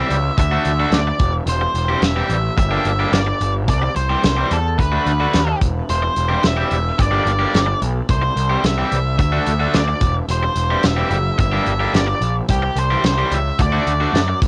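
An octave-fuzz lead guitar and an overdriven electric guitar open this short, wistful indie rock excerpt together, joined almost at once by fuzz bass and drums, all playing straight through the roughly 14.5-second cut. At 109 BPM in 4/4 with a straight feel, the tune sits in C lydian, cycling through D, C/E, Gm and C, with a D6 appearing once at 4.8 seconds. The dark, distorted lead carries the melody in a narrow upper register, its fuzz tone further smeared by cassette tape, while the bright, compressed rhythm guitar picks a jangly riff up front. Underneath, the picked bass is punchy and overdriven with a warm, fuzzy body, and the loose acoustic kit brings a fat snare, tight kick and hi-hat from a small room, also colored by tape. The home cassette recording is dry and close, giving the whole piece an intimate, lo-fi character.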